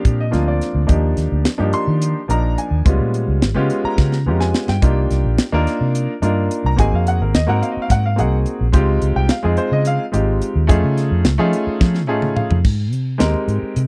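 A clear grand piano opens this funky, soaring electric jazz fusion excerpt in a straight 7/8, quickly joined by a dark, round, foam-muted electric bass and a tight, airy funk kit with a high-tuned snare, all up front in a dry, close 1970s-style studio sound, as rich chords such as Ebmaj7, Dbmaj9#11 and F7alt pass by, drum fills arrive at 4.0 and 11.8 seconds with a piano fill joining the second one, and an Abmaj9 opens a new section at 12.6 seconds.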